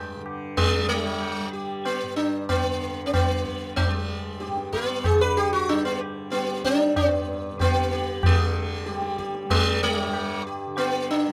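Hindustani classical music in a devotional, radiant mood, this short excerpt moves at 94 BPM in a seven-beat cycle with a straight feel, centred on G major. The sitar carries the melody up front, its bright, plectrum-plucked tone buzzing and shimmering with sympathetic strings as it ranges from G3 to B4. Beneath it, the tanpura holds a mellow, softly plucked drone between G2 and G3, its own buzz sitting well back in the mix. The tabla enters at 0.3 seconds with a low-tuned, ringing voice that carries a live-room character. Light reverb surrounds the performance, and after an opening passage the music moves into a new section at 8.2 seconds before the excerpt breaks off, cut from a longer piece.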